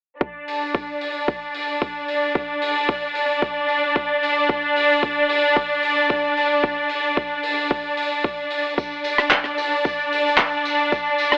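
The recording has a dry, gritty, telephone-like quality with a light touch of studio reverb, giving this groovy, sunny nu-disco cut a lo-fi edge. Up front, a lush, bowed string section holds sustained chords with focused vibrato, its sound pumping under sidechain compression and softened by a low-pass filter. A punchy, layered electronic kick sits prominently beside the strings, while a tight, polished funk kit adds airy hi-hat, handclaps and rim clicks in straight 4/4 time. Around 8.8 seconds a tambourine slips in, sitting in the background and carrying a live-room feel. The whole clip runs as one continuous section, cut from a longer piece.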